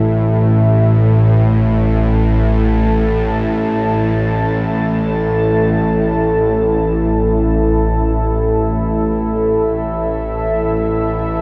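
In free time, this ominous dark ambient drone excerpt sets a deep, detuned pad with ring-modulated, wave-folded sawtooth tones and chorus, holding sustained chords from E4 to A5 on an A5 chord, over a tense, nasal, string-like bowed drone in the low register with vibrato and a noise layer, both parts sounding together from 0.0 to 11.4 seconds and bathed in an enormous, cavernous reverb.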